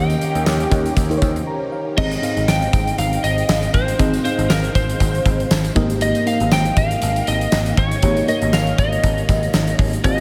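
This uplifting, nostalgic 1980s-style pop excerpt sets a slightly broken-up, compressed lead guitar melody with chorus and delay over a lush, detuned FM electric piano with chorus and tremolo, a growly picked bass, a huge arena drum kit with a fat snare and punchy kick, a very quiet jingly tambourine, and a smooth sawtooth pad that holds chords for the first 2.0 seconds, where a brief electric piano fill and break lead into the second section, inside a dreamy, reverb-soaked mix.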